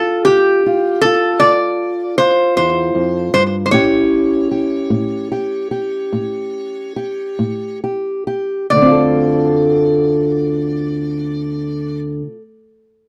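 A metallic, nasal lap resonator guitar, played with slide and fingerpicks and touched with slapback echo, carries the melody up front from the very start, over a dark, boxy parlour-style steel-string acoustic guitar fingerpicked in accompaniment. This brooding, soulful acoustic country blues moves in a slow 12/8 at roughly 44-52 dotted-quarter beats per minute in D minor, drifting from Dm7 to A7 and easing its tempo between 2.2 and 8.7 seconds before returning to Dm7 for a new passage. The sound is dry and close in the manner of a 1970s studio, with only light reverb, and this short cut from a longer piece ends around 13.1 seconds.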